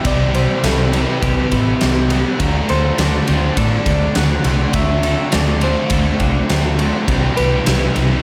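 A hazy, dreamy shoegaze and dream pop excerpt at 102 BPM opens with a gentle, keys-like FM synth lead carrying the melody through chorus, phaser and delay, over twangy clean guitar arpeggios with analog chorus and delay, while crunchy overdriven, bright double-tracked distorted and thick fuzz guitars churn out background riffs, the overdriven one trailed by reverse reverb. A big rock drum kit with a fat snare, tight kick and ride cymbal drives the straight 4/4 groove, and a round, foam-muted fingered electric bass sits up front from 0.1 s. The music moves from Cmaj7 to D7 and back, with the whole mix soaked in a huge ambient reverb.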